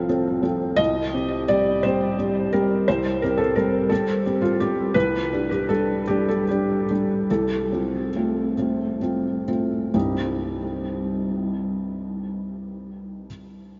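A rubato 6/8 pulse drifting between 42 and 59 BPM in dotted quarters slows from 3.9 to 9.9 seconds in this intimate, wistful neoclassical minimalist piano fragment in C dorian, cut from a longer piece. A felt-muted upright piano plays alone throughout, soft and mellow with audible action noise, sitting up front with lush chorus and tape echo as it moves through F/C, Cm and G5/C before returning to Cm at 9.9 seconds. A huge ambient reverb soaks the dreamy mix, which holds nothing above 7.5 kHz.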